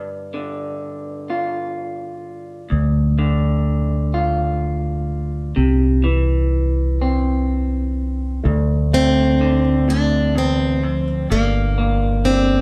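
A bright, picked steel-string acoustic guitar carries the melody from 8.9 seconds, sitting up front in a plate reverb, with a touch of finger squeak on the strings. This intimate, melancholic folk-pop ballad in a straight 6/8 opens on an electric guitar through a small old amp, slightly broken-up and lo-fi, playing picked accompaniment. A round, punchy fingered electric bass arrives at 2.7 seconds, dark and direct. In the second section a soft, felt-muted upright piano adds mellow arpeggios in the background, its action noise audible. The harmony moves from G5 through Dm and C to Dm7 and Gm. The recording is heard from further back in a moderately reverberant studio, carries lossy compression artefacts, and is cut from a longer piece.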